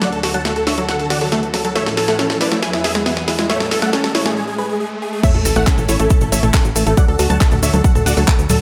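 Uplifting and euphoric, this excerpt of uplifting trance runs at 138 BPM in 4/4 and A major, moving from a build-up into a drop at 5.2 seconds. A huge, bright supersaw lead carries the melody throughout with phaser, dub echo and sidechain pumping, over a lush, airy unison pad holding sustained chords with chorus, while a warbling, vintage-tinged unison pluck spins arpeggios through tape echo. The electronic house drum kit, with its cracking snare, handclaps, hi-hat, toms and crash cymbal, plays a fill through the build as a riser and sub drop sit in the background, leading to a short break with the chords dropping out at 4.4 seconds. At the drop, a punchy, tape-warm kick sits up front alongside a tight, driving sequencer bass, joined by a grainy tube shaker and a second, background pluck line. The chords move from D through A and E before settling on A and returning to D, and a moderate recital hall reverb gives the whole a spacious sheen.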